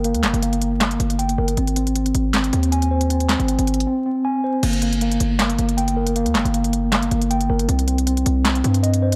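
Hip hop trap with a dark, brooding half-time feel, in which a mellow tine electric piano plays delayed arpeggios over a heavy, aggressive distorted 808-style bass and crisp electronic drums with sharp snare, handclaps, hi-hat and crash cymbal, all dry and up front beneath a layer of vinyl crackle, with a brief break at 3.9 seconds before the second section.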